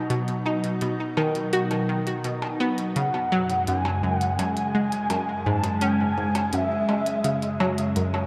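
Clicky electronic hi-hats and percussion blips sit low in the mix, their tape-warm tone echoing through delay. This fragment of a longer piece is hypnotic, cosmic, sequencer-driven space music. An evolving wavetable pad holds sustained chords up front, its detuned, morphing layers given depth by ensemble chorus, phaser and shimmer reverb, moving from B to F#sus2 at 3.0 seconds. Alongside it, a round, bright analog pluck repeats a riff with a fast attack, short decay and filter sweep, trailed by chorus, delay and shimmer. At that same 3.0-second mark, an expressive portamento lead enters high above with a smooth, mellow sawtooth melody coloured by vibrato and ensemble chorus. The whole mix is drenched in a wet spring reverb and heavy echo, so every line seems to float in open space.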